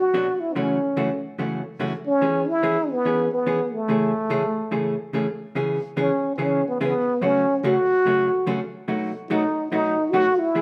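The recording has the feel of a band playing live together in one room, with a wet stone-room reverb around the players. This short country excerpt swings at 144 BPM in 4/4, with a down-home, swinging mood. A plunger-muted trombone carries the melody from the start, sitting up front and close-miked, its clear, wah-wah tone softened by a gentle attack and light vibrato in a jazz-styled solo voice. Entering a moment later, a vintage hollow-body electric guitar provides clean, picked, compressed accompaniment, also up front but mixed lower than the horn. The chords move from Bm through F#m7, E6 and Amaj7, then shift at 5.6 seconds into a second section of C#m7, F#m and B7 that runs to the end of the cut.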